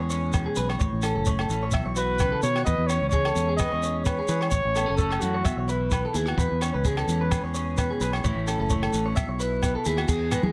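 A breathy, up-front trumpet carries the melody from 2.0 to 5.7 seconds, mellow in tone with light vibrato and a jazz-style solo voice, in this carefree highlife guitar band excerpt. Beneath it, a clean electric guitar with lush chorus plays the accompaniment while a second guitar, slightly broken-up and compressed, picks arpeggios high above through tape echo. A fingered electric bass sits up front, round, dark and punchy, as the chords cycle through E6, A and Bsus4 in a straight 4/4. A compact cocktail drum kit in a tight booth, with dark cymbals, a tight kick, hi-hat, rim click and crash, keeps time alongside a grainy shekere and ringing, close agogo bells. Bright congas sound only briefly at 10.4 seconds, and light reverb gives the ensemble a gentle glow.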